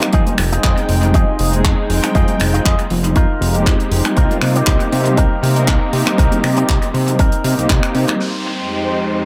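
An echo-heavy mix with spring reverb and small-room ambience frames this sensual, cosmic nu-disco excerpt at 119 BPM in F minor, where a punchy electronic kick and a tight, dry funk kit of hi-hat, handclaps, finger snaps and crash drive alongside distant, very quiet congas, a fat, detuned sawtooth bass pumps beneath a warbling analog pad moving from Fm7 to Cm7, a dark, compressed envelope-filtered guitar riff carries vintage sampler grit, and at 8.2 seconds a veiled, muted violin section and an electronic downlifter enter for the closing second.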